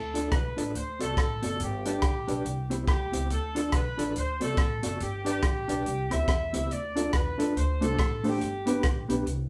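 Ska at 141 BPM with a swung eighth-note feel, driving and mischievous, cycling through Dm, D7, G and C in a short clip cut from a longer piece. A distant, roomy horn section carries the melody with light vibrato over woody pizzicato upright bass, a dark, clean fingered electric guitar treated with tremolo, and a compact cocktail kit up front with punchy kick, hi-hat and rim click. A boxy upright piano with long sustain adds stabs from 7.0 s, sitting in the background as the band plays live together in a reverberant room.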